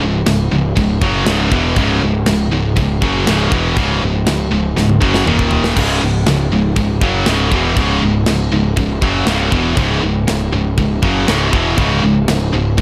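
Heavy metal with a dark, heavy mood, cut from a longer piece, where two bright high-gain guitars sit in the background of the riff beside a very quiet, double-tracked distorted guitar, an up-front overdriven fuzz bass punches beneath them, and a tight acoustic drum kit with bright cymbals enters at 0.3 seconds and plays a fill from 4.8 to 5.8 seconds as the C#m harmony shifts briefly to D#5 and back, all in a small room.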